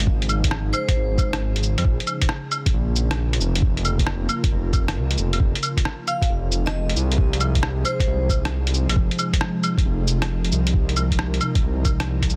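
A deep, rumbling detuned saw bass sits up front in this wistful, ghostly future garage excerpt, pumping with the sidechain beneath an ethereal, airy pad whose chorused, reverb-washed chords move from Dbadd9 to Bbm and then Fm7. A muffled, pitched-down electronic kick and a tape-softened lo-fi kit of cabasa, claves, hi-hat and rim click give a swung, thumpy pulse, with soft clipping on the snare. In the background, a bright, metallic vibraphone struck with hard mallets rings out brief delayed phrases at 0.7 seconds and again from 6.1 to 8.3 seconds, all within a dense, heavily limited mix under light reverb.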